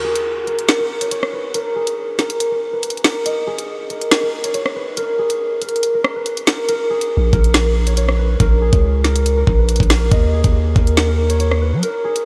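Tense and cold, this half-time drill beat at 140 BPM in Bb phrygian opens with a mellow, thumb-plucked concert harp melody at 0.0 seconds, its ringing tone softened by a low-pass filter and a diffuse ambient delay. An electronic drum kit enters at 0.2 seconds with a knocking kick, woody snare, bright hats and rim clicks, all overdriven and up front, and a deep, sine-toned 808 bass with a fast attack and long decay arrives at 7.2 seconds over a Bbm chord after a brief kick dropout. The whole fragment, cut from a longer piece, sits in a dreamy mix soaked in huge ambient reverb.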